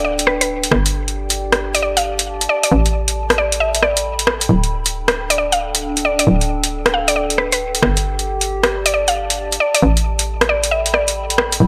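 Late-night and moody, this two-step UK garage excerpt in D dorian moves at 135 BPM with a swung 16th feel, as an overdriven garage drum kit with metallic hi-hats and rim clicks enters at 0.2 s up front, a hollow, bouncy FM bass knocks punchy low notes, a woody, round mallet-like synth pluck carries the melody through chorus and digital delay, and a warbly, nostalgic tape-like pad adds a dark, detuned, lo-fi haze with slow attack and built-in reverb over a cycling D5, G5 and Asus2 progression.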